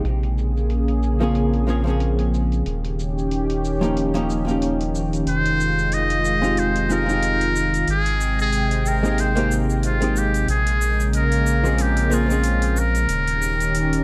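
This sunset chillout excerpt opens with a clean, hollow-body jazz guitar playing accompaniment over a lush, detuned sawtooth pad with chorus and a round, deep analog bass that sits up front with a dark, nasal pluck. A quiet layer of electronic hi-hat and cabasa, with metallic hats softened by low-pass filtering and a tape-toned grain, carries a gentle swung sixteenth feel. At 5.3 seconds a trumpet with a metal mute takes the solo melody up front, its buzzy, thin tone touched by light vibrato, scooped notes and tape echo in a jazz style. The guitar, also fed through tape echo, drops out at 13.1 seconds while the pad, bass, percussion and trumpet carry on. The chords cycle smoothly through Bbm7, Eb7, Fm7 and Abmaj7 in an echo-heavy mix with light reverb, giving the whole a warm, smooth glow.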